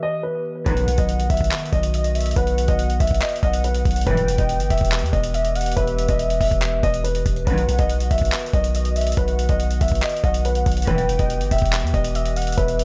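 A deep, decaying 808-style bass anchors this dark, hard-hitting half-time trap excerpt at 141 BPM, entering at 0.7 s alongside a gritty, compressed sampler-style kit of thumpy kick, hi-hat and handclaps, while a boxy, intimate grand piano with audible action noise carries the melody through low-pass filtering and analog delay over a warbling, nostalgic lo-fi pad, a velvety synth lead with vibrato and portamento adds a second line, and veiled, muted strings stab distantly on each chord change in an echo-heavy mix with light reverb.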